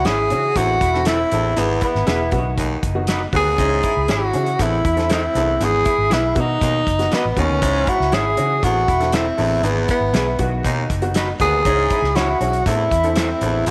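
This uptempo 1960s-style soul excerpt at 119 BPM in 4/4 opens with a breathy tenor saxophone carrying the melody up front, its soft attack, scooped notes and vibrato giving it a jazz-style solo voice. Beneath it, a round, foam-muted fingered electric bass, an acoustic drum kit with a fat snare and tight kick in a small room, and a clear, woody upright piano, slightly detuned and sitting in the background, all start together. Two picked electric guitars through a small old amp enter at 0.1 seconds: one plays a slightly broken-up riff with analog chorus, and the other adds lo-fi stabs with warbly pitch drift and tape echo. A growling, raspy baritone saxophone joins at 0.6 seconds with a punchy, close-miked riff. The harmony cycles through C#m, Am, E/G# and B, while an echo chamber reverb with studio ambience lends the joyful, uplifting piece a lively glow.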